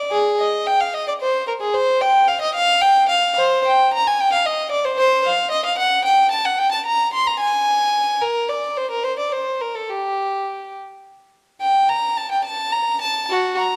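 A single bowed violin sits close and up front, its gut-string tone nasal and reedy with light vibrato in a period style, carrying a grave, introspective baroque-style suite movement alone across this short 13.8-second fragment cut from a longer piece. Moving in a rubato 6/8 at roughly 68-76 BPM by the dotted quarter, the line ranges from F#4 to C6 and shifts from C minor into G minor at 5.0 s, with a new section arriving at 11.6 s. A moderate recital-hall reverb lends the solo line a gentle bloom.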